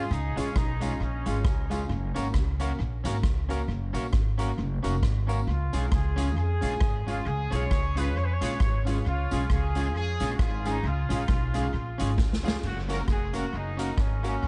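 A bouncy, cheerful ska piece in F# major at 134 BPM with a swung feel opens on a distant, roomy horn section with light vibrato and tape echo, over twangy, slightly broken-up electric guitar, slightly detuned upright piano stabs, and thumpy pizzicato upright bass on gut strings. The horns drop out at 1.7 seconds and return at 5.5, while an up-front street-band kit with a boomy kick and dark cymbals plays alongside a faint, jingly tambourine, and a drum fill at 12.2 seconds leads into a new section as the harmony moves between C# and F#. The production is dark and warm, set in a small room ambience.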